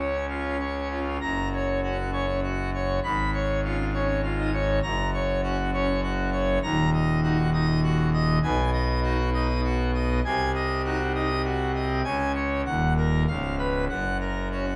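Majestic and jubilant, this brief classical organ toccata excerpt in 3/4 features a solo pipe organ on full registration, its brilliant mixtures and romantic voicing placed up front and spanning C#1 to B5 in a wet stone room, moving from a short opening on C# into a longer passage that settles on F# at 13.9 seconds.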